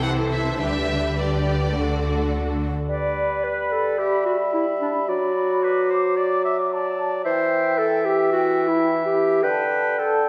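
A clarinet, up front and played in a classical style, carries the most presence in this graceful, spirited classical-period orchestral passage, taken from a longer movement in G major at a quick 109 BPM in straight 4/4. The opening belongs to the bowed strings alone: a rich, focused violin section takes the melody over a smooth, lush second violin line, expressive violas and a background cello section, while an up-front double bass section anchors the bottom, all with vibrato. The harmony moves from Am/C through G/D to D before the strings fall away at 2.7 s. At 2.9 s the woodwinds take over, with the clarinet joined by a soft-attacked oboe and a pure, hollow flute ensemble on second lines, and a mellow, punchy bassoon supplying the accompaniment. Under them the chords pass from G through D/F# and C/E to a Dsus4, all bathed in the generous reverb of a wet scoring stage.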